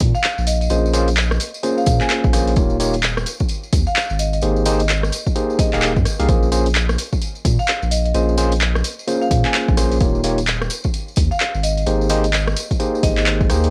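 A dry, lo-fi cassette home recording of a skippy, moody two-step UK garage groove at 129 BPM in Bb dorian, cut from a longer piece, where an up-front analog kick and a punchy drum machine of handclaps, hi-hat and rim click, both overdriven, cassette-treated and re-recorded in a large room, swing over a deep, thick, saturated sub bass, joined by a jingly, band-limited tambourine, a warm marimba melody with tape echo from 0.1 seconds, and barky, gritty electric piano stabs through a combo amp from 0.7 seconds, moving through Bbm7, Eb7 and Abmaj7.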